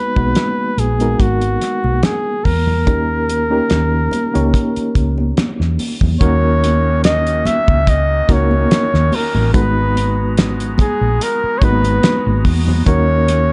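Bittersweet and silky, this lush 1970s-style soul passage, cut from a longer piece, moves at an easy swung pace. A flugelhorn carries the melody up front, its smooth top, light vibrato and scooped notes giving a jazz-style solo voice. Beneath it, a reedy, worn electric piano plays the chords through its built-in speakers with a fast tremolo, slightly out of tune. A round, punchy hollow-body electric bass and a cloth-damped, thuddy drum kit with a fat snare and tight kick sit close to the listener, joined at 0.4 seconds by ringing, high-tuned congas played very quietly with soft hands. At 6.2 seconds a pipe organ on a soft oboe stop with tremulant slips in behind the band with sustained romantic chords, all within a dark production and light reverb.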